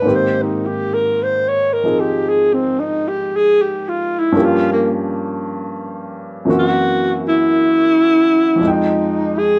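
Jazz at a slow 56 BPM with a swung feel, smoky and intimate in mood, cut from a longer piece, where a breathy, mellow alto saxophone with subtone, vibrato and a soft attack takes the solo melody up front over a woody, polished upright piano that shows audible action noise and long sustain, moving through Abmaj9, Gm7b5, Gb7#11 and Fm9 as the duo plays live together in a large studio room with moderate reverb.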